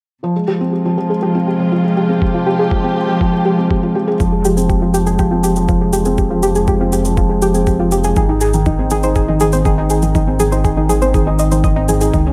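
A felt-muted upright piano, up front with thick felt and audible action noise, carries a mellow riff through low-pass filtering and delay in this hypnotic, intimate piano-and-strings electronica at 121 BPM in F minor, moving from Fmadd9 to Ab. A soft, round pluck with chorus and delay spins arpeggios above it, while a dark, bowed string section with vibrato and portamento fades in on sustained chords before falling away at 4.2 seconds. A muffled, thumpy, pitched-down kick arrives at 2.2 seconds, then a deep, rumbling detuned saw bass pumping to the sidechain and a roomy electronic shaker join at 4.2 seconds, all set in light digital ambience.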